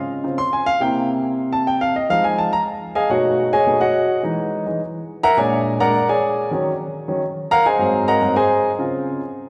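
Danceable and sophisticated, this brief jazz fragment in Db major moves at a brisk 211 BPM in straight 4/4, where a lone baby grand piano, warm and natural with long sustain and placed up front, spans Ab2 to C6 through rich changes such as Dbmaj7, Cb13, Emaj7#11 and Bb7alt before arriving back on Dbmaj7 at 8.8 seconds, the whole performance bathed in a wet church reverb with a 2.6-second decay that gives it the resonant space of a church or concert hall.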